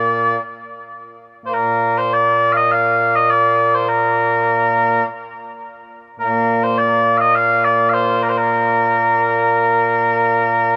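Mellow, sweet small bagpipes play alone and up front with a continuous, vibrato-touched tone through this ceremonial, stirring Scottish traditional passage in Bb major at 103 BPM in a straight 4/4, tuned slightly low to A4 = 436 Hz and set in a moderate, huge ambient reverb that hangs for 4.4 seconds across the 10.8-second cut from a longer piece.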